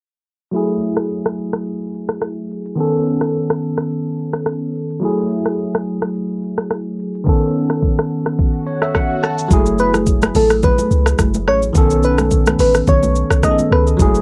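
A bell-like tine electric piano sits up front in this smooth, mellow afrobeats excerpt, its bright chords run through phaser and cassette tape as they move between F#m9 and B9 in F# dorian at 107 BPM with a gentle sixteenth-note swing. An electronic afro-pop drum kit plays alongside from 0.5 seconds, with a knocking kick, metallic hats, rim click and shaker, while a filter sweep runs through the first section and the piano adds a fill under a soft background swell just before 9.5 seconds. At that point a clean 808-style bass drops in, deep, boomy and dark with sine-like decaying notes. A soft struck synth lead follows, round and keys-like with a sub octave, vibrato, chorus, phaser and tape echo, carrying the melody in a narrow upper range. Ringing, close and dry congas join in the background, and the whole piece has the hazy, filtered feel of a home cassette recording in a small booth.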